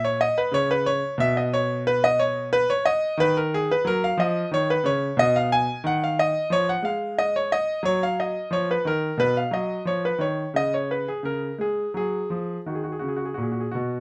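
Flowing with a rubato feel in four, this radiant, baroque-style suite movement for solo grand piano offers a clear, smooth and vintage-tinged tone with short sustain, placed up front by close, detailed microphones in light reverb, its harmony moving through chords such as B, D#m and Fm7 before a brief chordless moment near 10.5 seconds and a closing turn to F#, cut from a longer piece.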